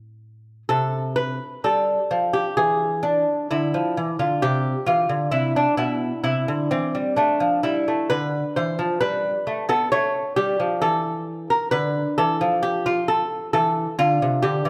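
A solo lute, delicate and fingerpicked on gut double strings with some octave-doubled courses, sits up front in a moderate recital hall reverb, playing a flowing, solemn baroque-style dance in 4/4 with a rubato feel, its harmony moving from Am through Fadd9/C and Dmadd9 to D5, A5 and finally Dm at 11.7 seconds in this short cut from a longer piece.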